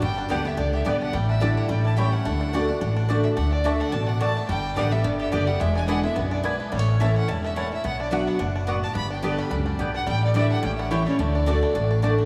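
A thumpy, up-front upright bass anchors this lively, driving bluegrass passage in D major at 215 BPM with a swung feel, joined by a full-bodied, picked dreadnought acoustic guitar up front, a bright, twangy fingerpicked banjo and a clear, biting, distant fiddle carrying the melody through a diffuse ambient delay, while a woody double-strung mandolin adds stabs from 0.3 s, all set in a dreamy mix soaked in huge reverb over small-room ambience, cut from a longer piece.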